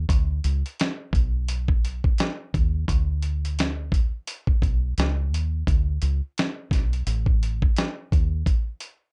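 A relaxed 86 BPM groove in 4/4 swings its sixteenths gently, setting a cosy, mellow lo-fi hip hop mood in this short cut from a longer piece. A dusty soul sampler-style drum kit carries the beat from 0.1 to 9.0 seconds, its hi-hat, thumpy kick and medium-tuned snare sounding compressed and gritty, as if re-recorded in a small room, and placed up front. Beneath it, a deep dub fingered electric bass plays from the start until 8.4 seconds, moving between A1 and Eb2 with a dark, round, foam-muted tone that stays punchy and close. The pair fills a single section with a dry, intimate sound that carries little reverb. Tuned slightly below standard pitch, the whole has a lazy, homespun charm.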